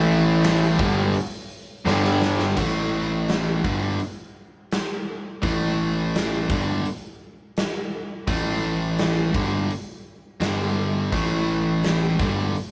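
A straight 4/4 pulse at 84 BPM drives this confident classic rock cut, taken from a longer piece and captured as a rough rehearsal-room take in moderate reverb. An up-front cranked stack guitar and a growly, fuzzed, picked electric bass hold overdriven riffs around A and G chords throughout, while for the opening 2.6 seconds a double-tracked second stack guitar and a warm garage guitar with spring reverb, sitting in the background, thicken the riff. The acoustic drum kit enters at 0.4 seconds with a punchy kick, medium-tuned snare, hi-hat and crash in a bright stone room, firing a fill from 1.9 seconds into the new section at 2.6 seconds.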